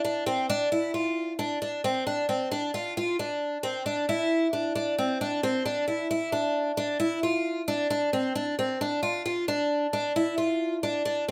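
A moderate studio ambience surrounds this short cut from a longer progressive instrumental, which moves at 134 BPM in a straight 7/4 with an intricate, driving mood. A picked twelve-string acoustic guitar plays solo from 0.0 to 11.3 seconds, its bright, shimmering, octave-doubled tone sitting up front in a compact range from C4 to F4. A slapback echo trails the guitar through this single section.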